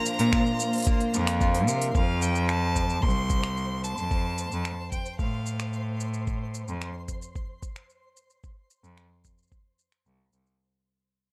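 Recorded in a small, intimate room, this fragment of playful folktronica moves at 111 BPM in a straight 4/4, centred on F major. A bowed cello carries the bass up front with a rich, nasal, boxy tone and light vibrato, while a muffled, thumpy electronic kick drives alongside it and an overdriven electronic kit adds finger snaps, smooth hi-hats and shaker. Over the opening Bb chord, a clear, biting violin sings the melody with vibrato and delay, a picked twelve-string acoustic guitar spins octave-doubled parlour arpeggios with a shimmering edge, and a mellow, detuned sawtooth pad hums very quietly beneath. The pad drops away at 1.9 seconds as the harmony settles on F and the piece begins a long fade, and the guitar falls silent at 2.5 seconds. The violin carries on until 6.0 seconds, and throughout, a twinkling granular FM texture sparkles in the background with its own reverb and an octave-up shimmer, lending the whole a gentle, warm glow.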